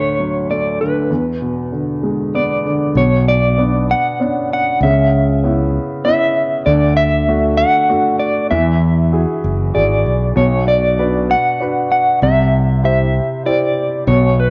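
Dulled by cassette tape and a small room touched with moderate spring reverb, this intimate, tender acoustic folk-pop ballad at 97 BPM in 3/4 opens with a woody upright piano, its action noise audible, and a dark, clean, fingered electric guitar carrying the tremolo-tinged melody, before a direct, amped fretless electric bass joins up front at 3.0 s for the remainder of this short cut, moving through chords from D and E7 to Bmadd9, C#m7, Eadd9, Bm and C.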